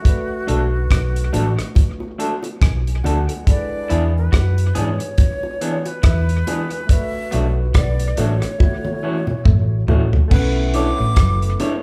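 Lovers rock reggae with a bittersweet, longing mood, as a breathy, expressive jazz flute carries the melody over a barky tine electric piano with overdrive, phaser and dub echo, a dry, damped 70s drum kit, a round, foam-muted fingered electric bass, dark stabs from an electric guitar through a small old amp, low-tuned bongos with dub echo in the background, and a twangy electric guitar riff entering at 3.9 seconds, all played together in one room with moderate studio reverb and a drum fill from 8.6 seconds.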